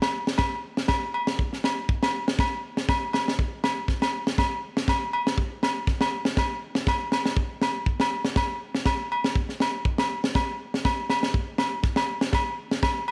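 Highlife with a danceable, carefree mood, this short passage is cut from a longer piece and rests on a lightly swung sixteenth-note feel in 4/4. A tight funk drum kit sits up front, its snug kick and high-tuned snare sounding acoustic and natural from 0.0 to 13.0 seconds. Ringing agogo bells play throughout, adding an acoustic percussion layer alongside the kit. Both parts carry the character of a small room, and a moderate echo chamber reverb gives the whole a small room ambience. The result is a danceable rhythm bed built purely from drums and bells.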